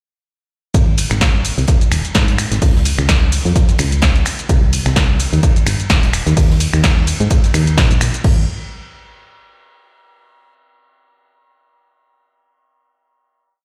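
At 0.7 s a euphoric, uplifting piano house drop arrives at 128 BPM with a light 16th-note swing, driven by a punchy, up-front electronic kick playing four-on-the-floor and a round, mellow FM bass riff in syncopation whose fast-attack, decaying notes pump against the kick. An analog drum machine supplies programmed hats, shaker, snaps, snare backbeat and crash, while an acoustic kit played with bundle sticks sits in the background as a looped, edited breakbeat with dark, filtered cymbals and hats that also pump. The whole mix sounds played over a big sound system in a bare stone room, and after the drop ends at 8.2 s a final note rings out to 10.1 s.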